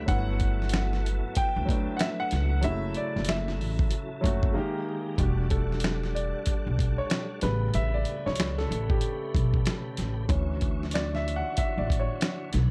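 An intimate upright piano, with audible action noise and long sustain, carries this soulful, introspective neo-soul and R&B excerpt, playing accompaniment throughout and taking a solo from 5.2 seconds to the end. A concert grand piano with deep bass and tape echo states a brief melody over the opening until 4.8 seconds, with a break arriving at 4.5 seconds. Beneath them, a tonewheel organ sits low in the mix, holding smooth, clean sustained chords through a fast rotary speaker and chorus vibrato, while a woody, dark pizzicato upright bass stays up front. A gritty, compressed sampler-style drum kit with a thumpy kick, medium-tuned snare, hi-hat and finger snaps sets a swung 16th-note feel at 94 BPM in E dorian. The production is dark and warm, with little reverb apart from the plate on the upright piano, and the harmony moves through rich chords such as Gmaj13, Em11 and Dmaj9.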